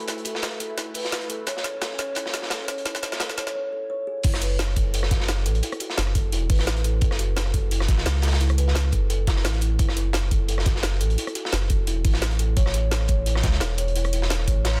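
A dense, heavily limited modern master with light studio reverb carries this lush, soulful liquid drum and bass excerpt at 173 BPM in F# minor. A bright, detuned sawtooth unison pad with chorus, phaser and sidechain pumping holds chords until 3.5 seconds, while a woody, hollow kalimba arpeggio rings through dub echo under a filter sweep during the build-up and drum fill. At the drop at 4.2 seconds, an overdriven, knocking electronic kick joins a round, sine-like sub bass up front, a gritty, saturated breakbeat kit with a rolled-off top, and an overdriven drum and bass kit with bright hats, before the kick falls out at 14.6 seconds and a brief electronic reverse cymbal closes the cut.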